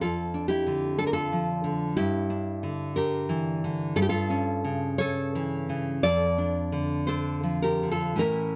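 A fingerpicked nylon-string guitar sits up front in this passionate, intimate romantic excerpt for solo classical guitar, drifting in rubato 4/4 at roughly 52-63 BPM in D minor through Dm/F, Em7b5/G and A7/G back to Dm/F, its deep classical tone and audible finger squeak framed by light reverb and a dark production tuned to A4 = 436 Hz.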